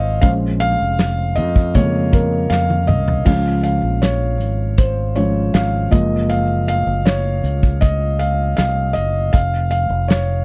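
A felt-muted upright piano and fingered electric bass open this hopeful, heartfelt pop ballad in Db major, with an unplugged drum kit joining at 0.2 seconds. The tempo is 79 BPM in a straight 4/4, and the piano carries a solo across the whole 10.4-second excerpt, its thick felt giving a soft, mellow, intimate tone with audible action noise. The bass is warm, direct and amped under the harmony, which moves from Bbm7 to Db, then to Gbmaj7, and settles on Db/F. The acoustic drums are played with bundle sticks, pairing dark cymbals with a medium-tuned snare, a punchy kick, hi-hat, toms and crash, and a drum fill arrives at 2.5 seconds. The sound is a dry, close 1970s-style studio recording with studio reverb, and piano, bass and drums all sit up front.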